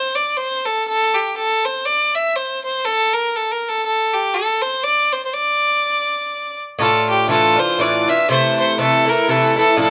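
Spirited yet dark, this lively Celtic waltz in three has a gentle swing. A single bowed fiddle carries the melody alone at first, its focused, bright tone touched with light vibrato and sitting up front in a moderate studio room. At 6.8 seconds the Irish bouzouki joins with picked, metallic double strings, accompanying over a Dmadd9 that moves to Am/C before this fragment of a longer piece breaks off.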